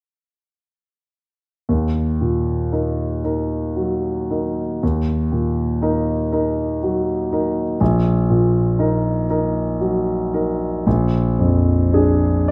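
A solo concert grand piano, open and up front with a deep bass and long sustain, plays from 1.7 to 12.5 seconds in this wistful, melancholic romantic nocturne, cut from a longer piece. At a slow 39 beats per minute in 6/8, with uneven, rubato pulse, it stays in E-flat minor (tuned to A4 = 442 Hz), moving from E-flat minor through its inversion over B-flat to a B-flat seventh at 10.9 seconds. The instrument spans B-flat1 to D5 and sits in a wet recital hall reverb with a 1.5-second decay.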